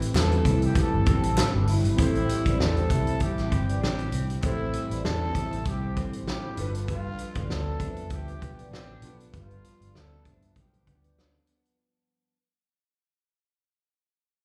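This mellow, wistful slice of indie and bedroom pop opens at once with a dark, slightly broken-up electric guitar through a small old amp, warbly lo-fi synth keys, a round, foam-muted picked bass and a loose indie drum kit with a fat snare and punchy kick, while a very quiet group handclap flickers by in the first moments. At 98 BPM in 4/4 with a light swing on the sixteenths, it sits in A minor, resting on Am7 before moving to G7 at 6.6 seconds. A raspy, growling trumpet carries the melody from 0.2 seconds, its light vibrato softened by lush chorus and tape echo. At 2.0 seconds a metallic, ringing vibraphone with a fast motor vibrato joins as a second line in the background, and the whole piece begins a long fade-out from that point. The guitar wavers with analog chorus and pitch drift, the nostalgic synth keys carry a cassette-tape haze, and the gritty, saturated drums sit up front with a rolled-off top. 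It all comes across as a live gig heard through a venue's PA, wrapped in club reverb and cut from a longer piece.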